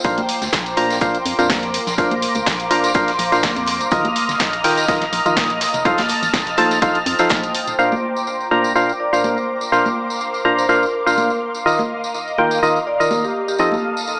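A swung 124 BPM piano house groove in Bb major, built on a punchy, tape-warm electronic kick, a layered house kit with bright hats and punchy snare, a very quiet big-room rock kit, and band-limited tambourine and congas, drives this uplifting, joyful cut from a longer piece through Bbadd9, Ebsus2 and F7 until the bass and kits drop out after a band accent at 7.3 seconds. Up front, a hollow, percussive organ stab carries the riff with chorus and digital delay, over a dark, organ-like FM bass with tube saturation, while a silky analog string pad with vintage sampler grit and an ethereal, airy pad with phaser sit behind, all three pumping with sidechain. From 9.0 seconds a soft-mallet vibraphone adds a ringing, mid-forward melody with digital delay, and the whole mix has a plate reverb, small-room ambience and a small-speaker tone.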